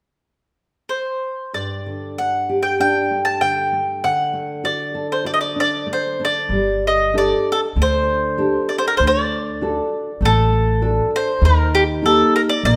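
A mandolin carries the melody from 0.9 seconds, its picked double strings giving a round, up-front voice that sings between G4 and A5 in this passionate, mournful fado-style ballad. A nylon-string guitar joins at 1.5 seconds with fingerpicked classical accompaniment, warm and close. An upright bass enters at 6.5 seconds, played pizzicato on gut strings with a woody, dark, thumpy tone in its low register. The music sits in G harmonic minor at 97 BPM in 4/4, with a rubato feel, moving between Gsus2 and D before turning to Eb near the close. A wet recital hall reverb surrounds the players, and this excerpt is cut from a longer piece.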